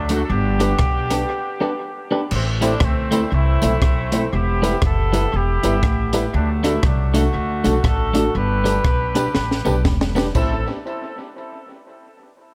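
The recording has a light studio reverb, with the drums and upright bass sitting up front. This is a mischievous, energetic ska cut from a longer piece, in A dorian at 119 BPM in 4/4 with a swung eighth-note feel. A clear, punchy, tight horn section carries the vintage-tinged melody with light vibrato. It is backed by a woody, thumpy pizzicato upright bass on gut strings and a twangy, compressed clean electric guitar. A dark, boxy upright piano adds mellow stabs, and the horns, guitar, piano and drums all carry an analog delay. The compact cocktail kit is dry, with a high-tuned snare, punchy kick, rim clicks and dark cymbals, while a very quiet, jingly tambourine sits close underneath. The harmony moves through G, Am, Em and D, with a break at 1.3 seconds and a drum fill from 9.3 seconds leading back to Am.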